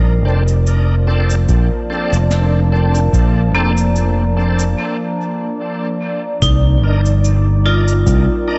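Deep and meditative, this brief ambient dub excerpt moves at 73 BPM in a lightly swung 4/4, with a warbling, lo-fi pad sustaining chords through chorus, phaser and its own reverb, metallic vibraphone arpeggios ringing into dub echo, an up-front fingered electric bass, bright tonewheel organ stabs with key click and slow rotary speaker from 0.3 seconds, cabasa and brushed snare in a small room, and a deep, tape-toned electronic kick arriving at 1.5 seconds, all shifting from Bbmaj7 to Cm9 at 6.4 seconds after a break at 4.8 seconds.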